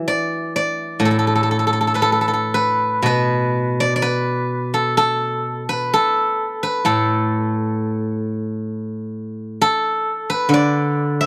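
A dry, close studio sound with a 1970s character places a lone steel-string zither up front, its fingerpicked tones ringing and silvery. This brief excerpt of Chinese traditional solo plucked-string music moves in a free, rubato 4/4, elegant and serene as it spans from low A2 to a high F#5. After an opening passage of about 3.1 seconds, a second section unfolds until the cut at 11.3 seconds.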